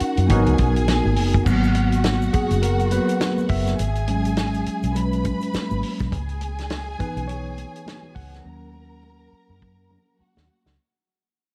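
The recording has a dark, warm studio sound with light reverb and a small-room ambience, cut from a longer lush 1970s-style soul piece in G# minor at 103 BPM, with swung sixteenths in 4/4 and a cinematic, silky mood. A tine electric piano, played through a combo amp with medium tremolo, sits up front in the accompaniment and then takes a clean solo from 1.5 s as the music fades out. Beneath it, a foam-muted fingered electric bass sounds round and punchy, and an acoustic drum kit recorded in a tight booth, with a medium-tuned snare, tight kick and rolled-off top, plays hi-hat and crash before a fill from 8.5 s. A bowed string section adds an expressive second line with vibrato, and a mellow horn section doubled in octaves places brief stabs at 0.3 s in the background. Distant, ringing high-tuned congas and a grainy egg shaker stay very quiet, while the harmony moves from G#m7 through G#m9 and G#madd11 to C#m7 and D#m7.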